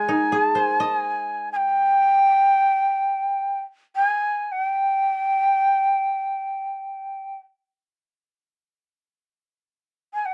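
Austere and meditative, this fragment of Japanese traditional chamber music drifts in free time, tuned to A4 = 441 Hz. A breathy, end-blown bamboo shakuhachi carries the expressive melody from 0.0 to 10.3 seconds, staying between G5 and Ab5 with a straight tone, crisp chiffy attack and a distant quality despite sitting up front. A dry, woody koto plucked with fingerpicks accompanies it only until 2.7 seconds, all within a dark, warm production touched by light reverb.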